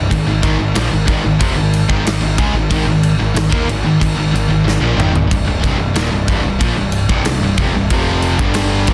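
Heavy metal in a dark, aggressive mood: three picked electric guitars churn out the riff from the start, two of them bright and high-gain with distortion (one double-tracked) and a third warmer and sludgy with overdrive, all sitting in the background alongside a growling, overdriven picked bass. A big acoustic rock kit with a punchy kick, medium-tuned snare, crashes and toms sits up front in a natural big-room sound, launching a drum fill at 4.7 seconds as the harmony moves from Ab5 to Cm at 5.3 seconds. The short cut from a longer piece carries a dense, heavily limited modern master.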